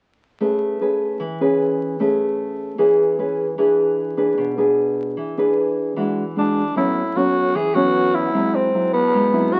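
A growling tenor saxophone steps up front at 6.4 seconds, its breathy subtone tone raspy and gritty, with soft attacks, scooped notes and a vibrato that lends this relaxed, sophisticated bossa nova its jazz character. Beneath it, a thumb-plucked nylon-string guitar in a classical vein carries the accompaniment from 0.4 seconds, acoustic and also placed up front. The tune moves at 152 BPM in a straight 4/4 in A major, the harmony drifting from Amaj9 through E7 and E9 before settling on A69 and a tense G#7alt. The music opens its second section at 6.8 seconds, shortly after the saxophone enters. A wet club reverb surrounds the players, and the whole sound carries the crackle of a very old 78 rpm record, as if this fragment were lifted from a longer performance.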